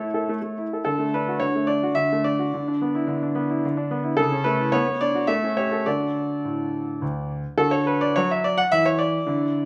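A clear grand piano carries this brief solo passage from a classical-period sonatina, its open tone and long sustain placed up front. The mood is elegant and graceful, moving in a straight three-beat metre, with the piano ranging from D2 up to F#5 and tuned slightly below modern pitch, at A4 = 435 Hz. The harmony moves from A to D, through E over a D bass, then A over C#, B minor, A7 and back to D by 5.9 seconds. At 7.6 seconds a new section begins and runs to the end at 9.7 seconds; the passage is cut from a longer piece. Close, detailed microphones capture the instrument within a moderate recital hall reverb that lingers for about 1.4 seconds.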